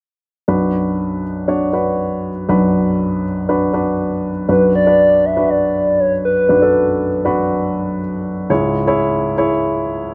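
A woody upright piano opens this dramatic, bittersweet pop excerpt at 0.5 s on a Bm chord in B dorian at 120 BPM, before a hollow, clarinet-like synth lead with chorus and vibrato carries the soft, sustained melody from 4.5 s to 7.2 s, and the piano shifts to C#m near the end, all in a wet studio reverb.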